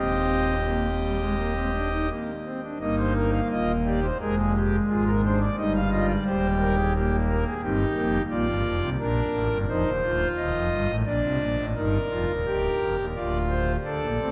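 Set deep in a vast, echoing cathedral with a long, wet reverb tail, a solo pipe organ on its foundation stops sounds thick and up front, its romantic voicing reaching from the deep bass up into the upper range. This lively yet stately baroque-style classical piece is a four-part fugue in a straight 4/4, heard as a short cut from a longer work. A brief opening gives way at 2.8 seconds to a longer second section that runs to 13.9 seconds, and the organ stops at 14.3 seconds.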